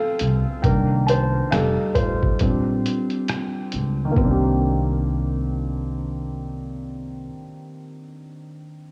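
A hazy, cassette-tinted sound, lit by light digital reverb and a small room ambience, frames this short fragment of melancholic lo-fi hip hop in 4/4 with a swung sixteenth-note feel. A felt-muted upright piano sits up front, soft, mellow and intimate, its thin felt and audible action noise colored by tape and a low-pass filter, with a filter sweep passing over it through the first 4.2 seconds. Its chords move from a rootless Dm7 through Cm9, F9 and Bb69 before settling on Cm9. An acoustic upright bass, plucked pizzicato on gut strings, lays a woody, dark low end beneath. A compressed, pitched-down sampler-style kit of hi-hat, rim click and a thumpy kick adds muffled 12-bit grit and re-recorded character up front until 4.4 seconds, while the bass carries on to 7.3 seconds and the piano plays on to the close.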